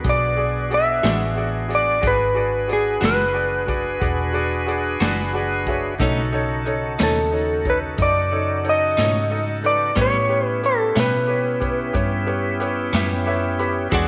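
A dark, clean lap steel guitar sits up front with the slide melody in this swaggering, rollicking slow blues in 12/8, cut from a longer piece. Beneath it, a brilliant, woody upright piano adds fills at 5.0 and 12.9 seconds, a reedy tonewheel organ with light overdrive, key click and slow rotary speaker holds sustained chords, and a round, foam-muted electric bass plays alongside an airy big-band drum kit with a punchy kick. A picked, compressed electric guitar with tremolo enters at 1.0 seconds in the background, and the whole band sits in a moderate echo-chamber reverb.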